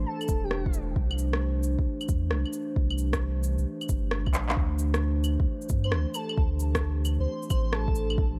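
Melancholic and ghostly, this future garage excerpt at 133 BPM with a swung 16th feel sets a warbling, nostalgic tape-like pad with chorus and sidechain pumping over a deep, round sub bass, while an airy, dreamy lead with analog delay appears briefly at 0.1 seconds and returns at 5.8 seconds, overdriven electronic shaker, claves, cabasa, rim click and handclaps ride alongside a soft, overdriven kick, a drum fill lands at 4.3 seconds, and the chords move from Am7 to C before settling on D5.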